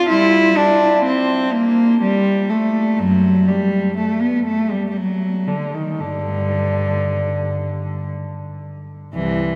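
A single bowed cello, smooth and up front with vibrato, plays a radiant, flowing baroque-style suite movement in 3/4 at a rubato 57-63 BPM, ranging from C2 to E4 across this 9.6-second cut from a longer piece while a vast cathedral reverb with a 6.2-second decay surrounds its even tone.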